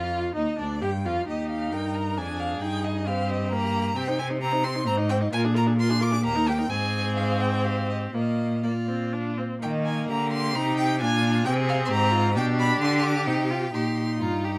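This excerpt comes from a quick classical-period movement for string quartet, cheerful and lively, moving at 131 BPM in 3/4 with a rubato feel and settling into Eb major from 4.0 s. The first violin carries the melody high in its range, its rich, smooth and even bowed tone shaded with vibrato and placed up front. Beneath it, the second violin plays an expressive second line, colouring its notes with vibrato and portamento. The viola supplies a warm, focused accompaniment with a smooth top. The cello anchors the bass with a clear, vibrato-touched sound that also sits forward in the mix. All four players sound throughout, moving from an opening section into a second one at 9.6 s, captured by close, detailed microphones with a light touch of reverb.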